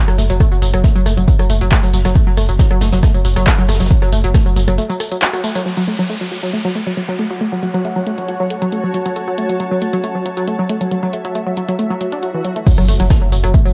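Industrial and driving, this short cut of peak-time techno pushes ahead at 137 BPM in F# minor, built on an up-front, tape-warm electronic kick, a punchy analog drum machine of crash, handclaps, hats, rim click and tambourine, and a thick, saturated sine sub bass, with an acoustic brush kit of hi-hat, shaker and snare tucked in the background. A round sawtooth-and-square analog pluck with a noise layer carries the riff throughout, glazed in chorus, overdrive and tape echo, and the whole groove pumps against the kick in a dark, lightly reverberant mix. After a break at 4.8 seconds, a filter sweep on the drums, a downlifter and a cloudy, detuned granular pad build toward a swell and an impact that bring the kick and bass back for the drop at 12.7 seconds.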